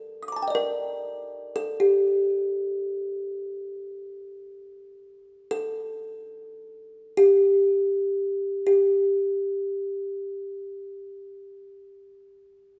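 A solo kalimba opens this excerpt of Japanese traditional chamber music, its woody, thumbnail-plucked tones sitting up front and ringing out in free time. Set in a G hirajoshi scale and tuned to A4 = 442 Hz, the playing ranges from G4 to Eb6 and carries a solitary, austere mood. Over the first 8.7 seconds the pace gradually slows before a second passage begins and runs to the end. The kalimba falls silent at 12.1 seconds. A moderate concert hall reverb with a 2.0-second decay surrounds the airy, solid-board instrument.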